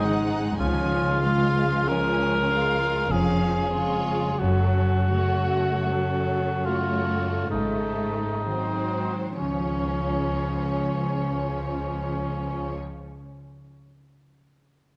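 A solo cor anglais sits up front with a warm, lightly vibrated classical tone, carrying a second line through this serene slow romantic movement for symphony orchestra in a rubato triple metre. Above it, a close, lush violin section sings the melody with soft attacks and expressive vibrato, while a second violin line and a clear, distant viola section fill in the background. A smooth, even cello section and a focused double bass section anchor the bass, and a concert harp ripples arpeggios in the background, its ringing notes lingering until 13.3 s. The music slows through its opening section, passing through a darkened minor colour before a flattened-ninth dominant resolves home at 9.4 s, where a second section begins. Moderate concert hall reverb and a dark production give the ensemble a soft glow, and the passage is cut from a longer piece.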